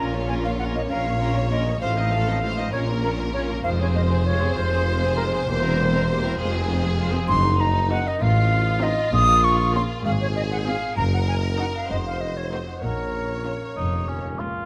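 Moving in a steady 6/8 at 65 BPM, this magical, quirky film cue in Bb minor sets a lush violin section on the melody in the background beneath an up-front, pure-toned concert flute, while a distant, soft-attack second violin section and smooth, even violas fill the middle, a very quiet ringing harp spins arpeggios, a mellow tuba, focused double basses and cellos with portamento hold down the bass, and a vintage-tinged cor anglais slips in up front only at 13.8 s, the whole ensemble set in a moderate scoring-stage reverb.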